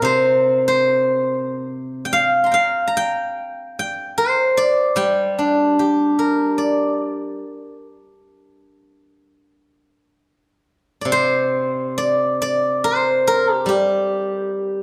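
A bright, silvery steel-string zither, played with fingerpicks, sits up front as the sole voice in this short excerpt of Chinese traditional solo plucked-string music, its ringing acoustic tone ranging from C3 to C6. The mood is elegant and contemplative, moving freely in rubato around 62-76 BPM in 4/4 and set in a G yu mode, with the music shifting into a new section at 10.2 seconds before the cut at 14.8 seconds. A light reverb gives the instrument a touch of space.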